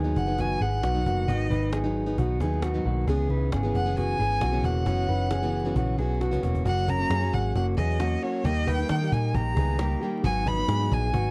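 Wistful and restless, this brief slice of jangly indie pop sets a plugged-in steel-string acoustic guitar, picked with audible finger squeak, against slightly broken-up arpeggios from a lo-fi electric guitar run through a small old amp, while a round, foam-muted vintage electric bass sits punchy and up front. A focused, boxy violin carries the melody with vibrato and a slapback echo, and a woody cajon with faint snares stays in the background, its fill at 5.8 seconds leading into a new section at 6.7 seconds. The sound is dry and close, a 1970s-style studio recording dusted with vinyl crackle.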